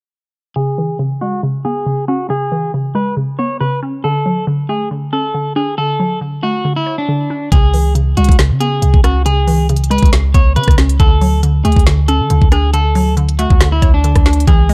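Trap-flavored hip hop at 138 BPM in a half-time feel, this menacing, hard-hitting excerpt sits in C# Phrygian with tuning slightly below standard pitch, alternating between C#m7 and Dmaj7. It opens with a dark, slightly broken-up electric guitar carrying the melody, delayed and low-pass filtered, alongside a hollow, bouncy square-wave pluck that plays accompaniment up front with a detuned, chorused edge and ring-modulated bite. A filter sweep runs through the opening section until 7.5 seconds, when the low end arrives. There a clean, boomy 808-style bass with a sine-like tone, fast attack and decaying tail enters together with a trap kit of knocking kick, woody snare, rim click and crisp hi-hats, placed prominently at the front of the mix. The production is dark and dry, with little reverb, keeping the drums and bass punchy beneath the shadowy guitar and pluck.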